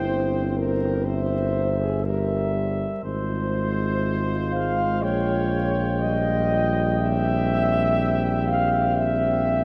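Classical brass band music in a hymn-like, melancholic and elegiac vein, moving at a slow 61 BPM in 4/4 with a rubato feel, heard as a 9.6-second portion cut from a longer piece. A warm, distant flugelhorn carries the melody between C5 and G5, while an up-front French horn section with light vibrato sings a mellow second line just beneath it. A dark, very quiet trombone and a soft-attacked euphonium sitting in the background fill out the accompaniment, and a tuba with a smooth top anchors the bass low in its range. The harmony drifts from C7/G through Fm/Ab and Gm7b5/Bb to C7/Bb, giving the phrase a searching, unresolved quality. A cathedral reverb places the ensemble in a vast, echoing space, and a vinyl crackle lends an aged patina.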